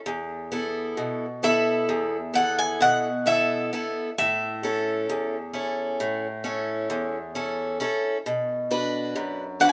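Greek folk in a straight 9/8 metre, this brief excerpt has a peaceful, tender mood, with a picked steel-string acoustic guitar laying down accompaniment from 0.1 seconds through chords moving from Esus4 to A and then Bm. The Greek bouzouki enters at 1.4 seconds to carry the melody high in its range, its double strings ringing metallic and glinting with some octave-doubled courses. Both instruments sit up front, the parlour guitar sounding boxy with fresh strings and an audible finger squeak, all bathed in a moderate plate reverb with a long tail.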